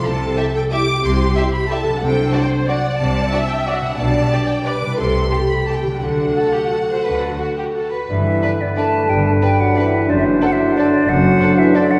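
Ringing harp arpeggios carry this sweeping, elegant classical excerpt in 3/4 and G major, flowing with rubato between 161 and 198 BPM, as lush vibrato violins sing the melody over a softer second violin line, expressive violas with portamento, clear cellos, rich distant double basses and mellow horn chords in the background, until at 8.1 seconds a pure silver flute, a roomy oboe, a very quiet clarinet and a background bassoon join, the whole ensemble heard from further back in a wet scoring-stage reverb.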